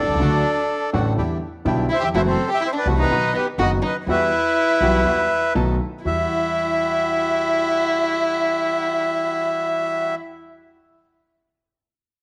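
A sultry, melancholic tango in E minor opens with a reedy, bright bandoneon carrying the melody up front, close-miked, dry and full, while a warm, bowed solo violin traces a second line beneath it with vibrato, soft attack and expressive portamento. A dark, mellow baby grand piano with a smooth, vintage tone and long sustain supplies the accompaniment, and a second bandoneon, shadowy and set in the background, adds stabs from 0.2 seconds onward. An acoustic upright bass, plucked on gut strings with a woody, thumpy sound, anchors the low end until 6.3 seconds. The pulse sits around 123 BPM in 4/4 but is played with a rubato feel, moving through chords such as Em7, F#m7b5 and B7 before settling on Emadd9 as a new section begins at 6.1 seconds. A moderate echo chamber reverb lends the studio ambience some depth in this short passage cut from a longer piece.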